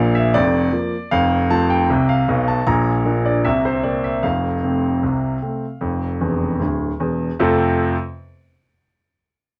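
Set in a straight 2/4 at 77 BPM, this short ragtime piano piece, cut from a longer work, moves with a jaunty, playful step. A solo grand piano carries everything from the start until 8.0 seconds, ranging from D1 up to Bb5, with a clear, up-front tone. The harmony in F major moves from Bb to F, back to Bb, then through a C9 before settling on F. The piano plays a fill from 6.2 to 7.4 seconds, leading into a new section at 7.4 seconds. Close, detailed microphones and a dry room make each note sound crisp and immediate, and the instrument is tuned to A4 = 442 Hz.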